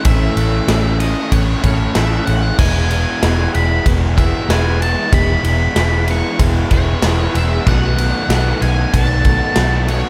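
Shoegaze-leaning dream pop rock in E major at 95 BPM, this dreamy, hazy fragment of a longer piece moves from A to E at 2.6 seconds and onto B7 at 7.7 seconds. A dark octave-fuzz lead guitar carries the melody through distortion and tape echo, while two overdriven rhythm guitars sit in the background playing riffs, the crunchy one trailing reverse reverb and the raw garage one shimmering with lush chorus. Up front, a big, natural-sounding acoustic drum kit with a punchy kick, medium-tuned snare, crash and ride plays alongside a round, foam-muted vintage fingered bass, all set in light studio reverb.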